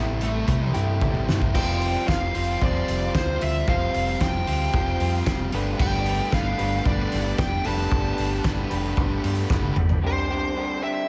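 An echo-heavy mix with light small-room reverb carries this jangly, upbeat indie rock fragment at 113 BPM in 4/4, where a smooth overdriven lead guitar carries the melody through analog delay over a slightly broken-up, lo-fi riff from an electric guitar through a small old amp and a bright, compressed fuzz guitar riff with subtle chorus, alongside a punchy fingered electric bass, a very quiet clean tonewheel organ holding sustained chords on a slow rotary speaker, and a loose, up-front drum kit with a fat snare and dark cymbals that enters at 0.2 seconds, plays fills, and stops with the bass and organ at 10.0 seconds as the chords move from C6 through Fsus2 and Gadd9 to Gsus4.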